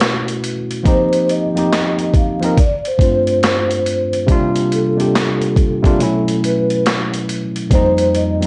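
Lo-fi hip hop at a slow 70 BPM with a swung 16th-note feel in C dorian, this nostalgic, melancholic excerpt rests on a worn, slightly out-of-tune tine electric piano, lightly overdriven and cassette-tinged through built-in speakers, alongside a gritty, compressed boom bap drum kit of thumpy kick, high-tuned snare, hi-hat and handclaps that sounds re-recorded in a large room, both placed up front. At 0.9 seconds a mellow, dark vibraphone with soft mallets enters on the melody, its metallic, ringing tone shimmering with fast motor vibrato as the harmony drifts through suspended ninth chords such as B9sus4, F9sus4, G9sus4 and C9sus4. Vinyl crackle, a moderate studio reverb and a muffled top end give the whole piece a hazy, aged sheen.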